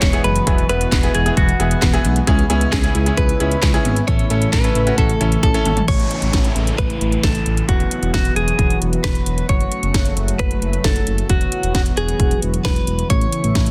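A punchy, up-front house drum kit with cracking snare, metallic hats, handclaps and toms drives this nostalgic, wistful synth-pop excerpt in E major at 133 BPM, under a smooth, dark gliding synth bass and a clean, direct-recorded electric guitar melody coloured by phaser and tape echo. A mellow analog pad with chorus sustains chords throughout, while a brilliant grand piano and a very quiet, detuned unison pluck playing arpeggios drop out with a drum fill that runs from 5.4 to 5.9 seconds, when a downlifter sweeps in. The chords move from Eadd9 through C#m7 and A, then Esus2 and F#m, under a dense, heavily limited modern master with light reverb.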